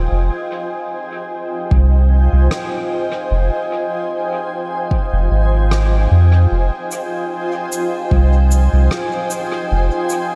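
Light reverb and studio ambience frame this hazy, spacious ambient dub excerpt at 75 BPM in F minor with a gentle swing on the 16ths, where a dark, blurred granular cloud pad holds an Fm7 chord up front over a round, soft sub bass, a deep, tape-warm electronic kick enters at 1.7 s, and a natural rim click and shaker with dub echo joins at 2.5 s.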